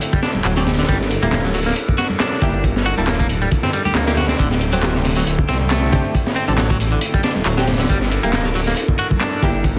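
Breakbeat at 137 BPM with a funky, playful swing, built on an up-front, gritty acoustic break with a high-tuned snare and tight kick, layered with a metallic-hatted garage kit of claps and ride, very quiet hard-hand congas, a deep, rumbling detuned saw bass, a twangy clean electric guitar riff with delay and sampler grit, punchy orchestra-hit-like synth stabs in the background, and reedy tonewheel organ chords turning on a slow rotary speaker and pumping against the beat, over D7sus4 and Gm6 in a dense, heavily limited mix.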